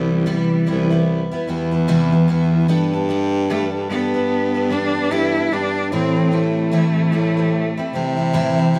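Dry and open-air in sound, this short excerpt of easy-going, heartfelt acoustic pop moves at 74 BPM in 4/4 with a gentle 16th-note swing, set in G major and drifting through Cmaj7, Gadd9 and Am7. A picked twelve-string acoustic guitar, full-bodied and shimmering with octave-doubled strings and audible finger squeak, carries the accompaniment up front, while a breathy baritone saxophone plays the bass line with a mellow, whispered, intimate tone and vibrato. Above them a rich, focused bowed cello sings the melody with vibrato, its distant voice touched by a slapback echo.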